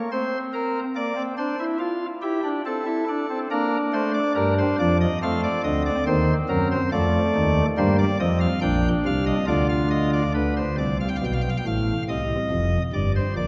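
Lively and elegant, this short cut from a longer baroque-style three-part fugue in Bb major moves at a steady 70 BPM in 4/4 on a solo pipe organ cornet stop, its nasal, chiffy voice sitting up front against a wet church reverb in a dark, warm production as the harmony passes through a diminished chord and turns to G7 at 10.3 seconds, then to C minor.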